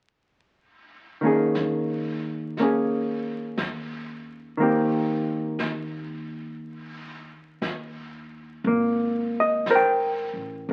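Brushes on the snare and hi-hat open this late-night jazz ballad at 0.5 s, setting a slow 59 BPM swing in 4/4. A dark, clean hollow-body electric guitar, played with the fingers, arrives at 1.2 s and sits up front as the main accompaniment, moving through Eb7sus4 and Eb6 before shifting to Abadd9 for a new passage near the end. A woody pizzicato upright bass joins at 1.6 s and stays low and soft beneath the guitar, with the brushed kit at a similarly soft level behind it. The small, reverberant room lends an intimate closeness, while the sound of a very old 78 rpm record, its crackle and dulled top end, gives the piece an aged, faded character. This is a brief cut from a longer performance.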